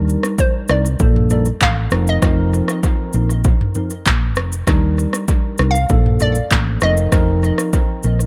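A straight 4/4 groove at 98 BPM drives this sunny, joyful afrobeats excerpt in F mixolydian, where a punchy, layered electronic deep house drum kit of kick, handclaps, rim click, shaker and toms sits up front with tape echo beside a dark, round hollow-body fingered electric bass, while a mellow tine electric piano carries the Ebmaj7, Bbmaj7 and F7sus4 harmony through lush chorus and tape echo, and a bouncy, detuned square-wave pluck with ring modulation and a filter sweep sings the high melody from 0.4 s, set in a light-reverb, echo-heavy mix.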